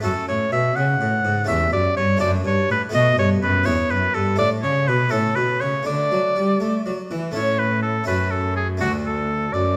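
Baroque-style classical sonata music in D major, this serene, flowing passage from a longer movement moves in a straight 6/8 at 82 BPM (dotted quarters), with a clear, up-front oboe singing the melody with vibrato and a smooth top, a full-bodied plucked harpsichord providing continuo accompaniment, and a close, period-style cello, played by a single player, bowing the bass line with an airy, reedy gut-string tone, all set in a moderate recital hall ambience as the opening phrase returns at 7.3 seconds.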